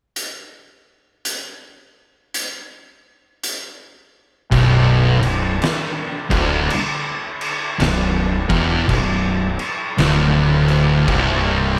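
An oversized, low-tuned acoustic drum kit opens this hypnotic, ominous stoner and doom metal excerpt on its own at 55 BPM with a swung feel, its dark crash and hi-hat, fat snare and punchy kick sounding gritty and up front in a bright stone room, until at 4.5 seconds two thick, distorted fuzz guitars pick a low B minor riff in the background over a growly, overdriven fingered electric bass, with light reverb on the mix.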